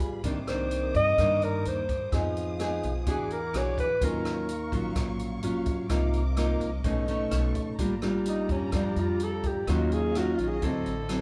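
A straight bossa nova groove in 4/4 sets the pace, carried by an open jazz drum kit of hi-hat, rim click and a boomy kick, captured naturally in a small room. A bright, full-bodied nylon-string guitar with fresh strings, fingerpicked in a classical manner and placed prominently, supplies the accompaniment alongside a woody, pizzicato upright bass. Above them, a warm studio string section holds expressive bowed chords with portamento and a smooth top. A breathy, mellow alto saxophone takes the solo melody from 0.5 to 5.0 seconds and returns at 8.3 seconds, with scooped notes and vibrato, sounding distant and roomy yet up front. The sunny, romantic mood rests on chords such as Cm9, Ebm9 and Bb6, and the band plays live together in one room with moderate large studio reverb, in a short cut from a longer piece.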